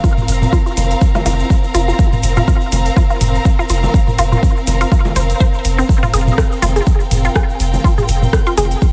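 A punchy, up-front electronic kick, a squelchy resonant blip pluck riff treated with phaser, tape echo, cassette tape grit and sidechain pumping, a grainy egg shaker in dub echo, and a dark, lush bowed string section, also pumping, open this hypnotic, clinical minimal techno fragment at 123 BPM with a 16th-note swing, centred on an Fsus4 chord. Tape-warm electronic toms and bongos with dub echo arrive at 0.2 seconds, followed at 0.3 seconds by a deep, sine-based sub bass holding F1 with a pitch-drop attack and pumping, plus a house kit of metallic hi-hats and rim clicks. A filter sweep runs across the synth arpeggio throughout, all set in an echo-heavy digital ambience.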